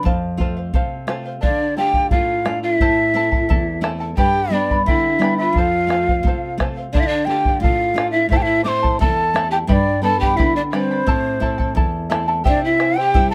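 Melancholic and earthy, this Andean folk excerpt moves at 87 BPM in 2/4 in A minor, opening with a fingerpicked charango's shimmering double strings, a full-bodied nylon-string guitar with audible finger squeak, and a deep, saturated bombo sitting up front. At 1.4 seconds a woody, breathy large quena with vibrato and rolled-off highs takes the melody close to the listener, while a mellow, chiffy, unsteady pan flute with vibrato adds a distant second line below it. Light reverb and close, detailed miking frame the cycling F, Dm, Am and G progression, which comes to rest on C at 12.5 seconds.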